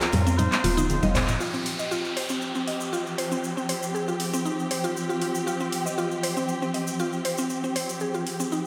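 A cup-muted trumpet opens this hypnotic afro house excerpt at 118 BPM, its soft, veiled tone carrying vibrato and scooped notes in a vintage jazz style through analog delay. Beneath it, a dark symphonic string section holds lush, bowed chords with an expressive, smooth top, while a mallet-like synth pluck spins bright, woody arpeggios treated with chorus and delay. The electronic afro-pop drum kit sits up front with metallic hats, handclaps and toms, joined by a grainy tube shaker, warm background congas and a deep djembe with metal rattles. A round, dark FM bass with tube saturation enters at 0.1 seconds, and a drum fill runs from 0.4 seconds, with a band accent landing at 1.1 seconds. From 1.4 seconds the trumpet, bass and hand drums have dropped away, leaving the strings, pluck, shaker and kit under an electronic downlifter, all bathed in a dreamy, reverb-soaked hall.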